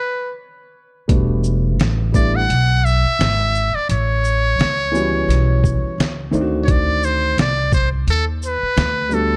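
Mellow and cool, this jazz-hop piece, cut from a longer work, sits at 86 BPM in E dorian with a swung 16th-note feel, opening with a muted trumpet alone before the band enters at 1.1 seconds. The trumpet carries the melody up front, buzzy and thin behind its metal mute, with light vibrato and scooped notes, while a dark concert grand piano adds smooth, short-sustained chords moving from Em11 through A13 and D7b9. A woody pizzicato upright bass and a gritty, tape-warm, pitched-down sampler-style kit with a thumpy kick, snare, hi-hat and shaker fill out the bottom, all inside a small room with a dark, warm production.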